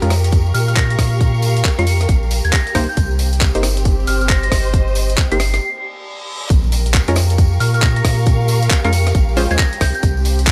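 UK garage in a skippy, soulful two-step groove, built on an up-front saturated sub bass with a thick triangle tone, a tight, layered electronic kick entering at 0.3 seconds, and a gritty, pitched-up breakbeat sampler kit of handclaps, hi-hat and rim click, with a jingly tambourine sitting distant in the background. Punchy, detuned sawtooth chord stabs with dub echo ride over a silky, warbling string machine and a dark, expressive bowed string section, both breathing with sidechain pumping, while a pure, gentle FM bell carries the melody high above. A short break is marked by a reverse cymbal from 5.8 seconds, and an electronic impact lands as the drop arrives at 6.5 seconds.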